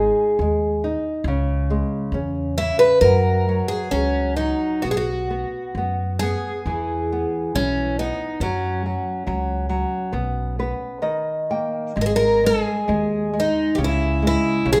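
A moderate recital-hall reverb surrounds this mournful, longing fado-style ballad in B major, which moves at 67 BPM in 2/4 with uneven, rubato beats and is cut from a longer piece. Up front, a picked twelve-string acoustic guitar with old strings carries the melody in a shimmering, octave-doubled, woody tone, while a dark, small-sounding nylon-string guitar fingerpicks the accompaniment with audible finger squeak and plays a fill from 10.1 s to 12.0 s. Beneath them, a warm pizzicato upright bass with steel strings anchors the low end as the chords pass from G#5 and C#m through E and Bsus2 to D#, then return to G#5 at 12.0 s for a brief new section.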